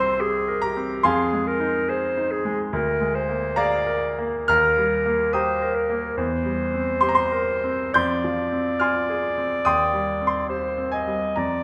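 Set in a wet recital hall, this brief cut from a longer romantic classical duo has an elegiac, solemn mood and a rubato feel in four. A clear clarinet with a soft attack and smooth top carries the melody up front, playing in a classical style through the whole passage. Beside it, a bright, polished concert grand piano with brilliant highs, deep bass and short sustain supplies the accompaniment across chords that move from Fm7 through Bb7/D, Eb and C7/E to Cm/Eb.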